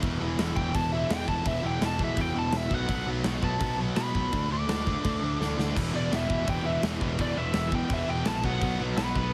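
Aggressive, angry punk rock at 167 BPM in a straight 4/4, heard in a short cut from a longer piece, where a bright overdriven guitar and a hollow-body semi-hollow guitar drive the riff over growly picked bass and a punchy big-room drum kit with bright cymbals, a biting lead guitar with delay solos from 0.6 seconds, a drum fill lands at 5.4 seconds, and a very quiet double-tracked distorted guitar joins at 5.7 seconds, all under light reverb and a heavily compressed radio sound.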